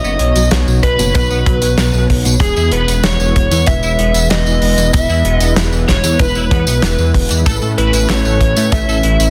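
Dreamy and romantic, this 95 BPM synthwave passage in E major, cut from a longer piece, sets a biting overdriven lead guitar melody with digital delay over a soft, pure synth bell line, a shimmering chorused pulse-width pad with sidechain pumping, a twangy clean electric guitar riff in the background, a dark, rumbling detuned saw bass up front, and a modern studio kit of handclaps, hi-hat, snare and tambourine joined by a punchy kick from 0.8 s, all moving through Badd9, E and Aadd9 in light reverb under a dense, heavily limited master.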